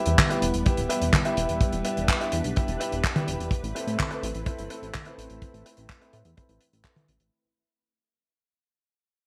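Bittersweet and nostalgic, this short italo disco excerpt moves at 126 BPM in a straight 4/4 over Em and Amadd9, with a dry, tight kick and a damped 70s kit of handclaps, hi-hat and toms carrying gated reverb up front. A dark, glossy chorused synth bass with a detuned sawtooth and pulse-wave pluck sits beneath lush, mellow string-machine chords, while a clear, intimate grand piano plays stabs through delay and a low-pass filter that sweeps across the whole passage, its action noise audible. Bright 1980s-style digital production, plate reverb and vinyl crackle frame the sound as the passage fades out from the start.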